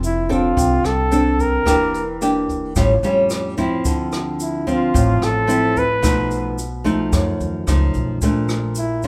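A straight 4/4 bossa nova groove at 110 BPM is laid down by a distant, roomy brush kit with a boomy kick, hi-hat and rim click, alongside a grainy tube shaker and a growly pizzicato upright bass. Up front, a fingerpicked nylon-string guitar with old strings carries the harmony from F6 through Em7b5, A7alt, Dm9 and B7#11 to Bbmaj7, while a smooth-topped flugelhorn with light vibrato sings a jazz melody from 0.1 seconds. The mood is romantic and sophisticated, bathed in a touch of reverb, and the passage is cut from a longer piece.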